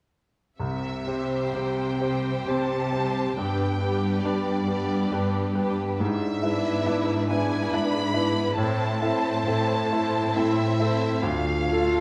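At 0.6 s a brilliant, up-front baby grand piano with long sustain carries the melody alongside distant, lush violins, very quiet mellow French horns holding sustained chords and smooth, rich cellos on the bass, joined at 1.1 s by a background second violin line and very quiet dark violas, in this passionate, lyrical romantic movement in C major and 3/4 at 57-72 BPM with rubato, moving through C, G, E7/G#, Am and Dm within a moderate concert hall reverb in this fragment cut from a longer piece.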